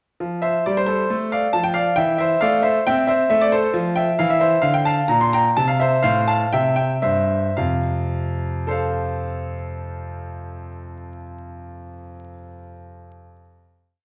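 Set in a flexible, rubato 4/4 that slows down from 2.9 to 7.6 seconds before settling onto a final chord at 7.6 seconds, this short classical-period piano sonatina feels elegant and playful. A clear concert grand piano plays alone and up front, carrying a tune in thirds over a walking bass, its smooth, vintage tone resting on a deep low end. The recording sits in a wet recital hall reverb with vinyl crackle.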